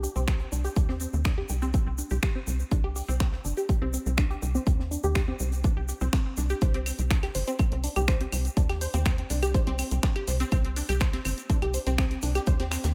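A punchy, tape-warm electronic kick drum sits up front from 0.3 s in this dark, cinematic melodic techno excerpt at 123 BPM in C minor, joined by a tight, driving sawtooth sequencer bass with sidechain pumping, a lush, detuned unison pluck playing bright arpeggios under a filter sweep with subtle chorus and tape echo, an analog drum machine's claves, finger snaps and hi-hat, a grainy egg shaker, and a very quiet, airy studio kit of hi-hat and snare, all held in a light small-room reverb over a steady C minor chord.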